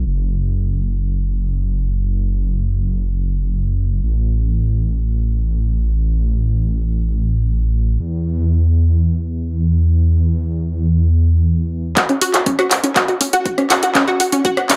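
This excerpt of progressive house moves in free time in F# minor, its pulse carried at first only by a dark, detuned saw bass that pumps against the sidechain. Up front and deep, the bass rumbles and beats with a saturated yet mellow sustain, ranging from F#1 to E2 over an open, chordless stretch until 11.9 seconds. At 12.0 seconds a build-up arrives on an F#5 chord, bringing a drum fill from a deep house kit of handclaps, hi-hat and rim click, its hats dusky and filtered, recorded again in a small room and placed close. A layered electronic kick with a tape-warmed, deep body sits lower beneath it, playing until 14.5 seconds. Over this, an analog pluck spins arpeggios between C#4 and F#4, round and bright with a fast attack and short decay, thickened by ensemble chorus, pumping with the sidechain and trailed by digital delay. Light reverb and digital ambience give the expansive, bittersweet mood a soft halo.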